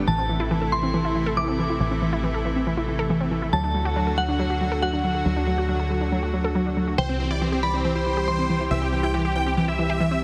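Euphoric, soaring trance at 139 BPM in 4/4, this cut from a longer piece moves through Am, D and C as a lush, thick chorused pad sustains chords, a bright detuned unison pluck with a filter sweep and dub echo spins arpeggios, a punchy, dark FM bass sits up front, a glassy, warbling synth bell with chorus, tremolo and dub echo adds a crystalline second line from 0.1 s, and a huge supersaw lead with phaser and dub echo enters at 7.0 s carrying the melody, all bathed in a moderate lush hall reverb and a heavily compressed radio sound.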